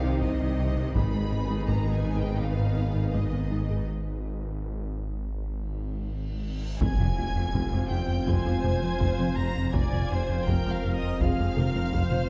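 A dark, warm production sits on a scoring stage with moderate reverb, framing this tense, relentless cut from a longer hybrid orchestral and electronic film score in F minor, moving at a straight 82 BPM in 4/4. High above, a clear studio violin section carries the melody with smooth vibrato, while a rich chamber violin section with a focused tone plays a second line beneath it. A lush, distant viola section fills in accompaniment in the background, drops out at 3.8 seconds and returns at 8.3. A dark French horn section and an ethereal, warbling pad hold sustained chords, and a tine-like, mellow synth pluck with chorus runs quiet arpeggios. The low end is heavy: a round analog bass with wave-folded depth plays a riff, and a menacing, detuned saw bass with a saturated filter swell joins an intense cello section, a very quiet tuba and a lush double bass section on the bass line. Taiko drums struck with hard sticks sit in the background, and after a break from 3.9 seconds and a drum fill, a reverse cymbal leads into a huge impact at 6.8 seconds as the harmony arrives on Fm.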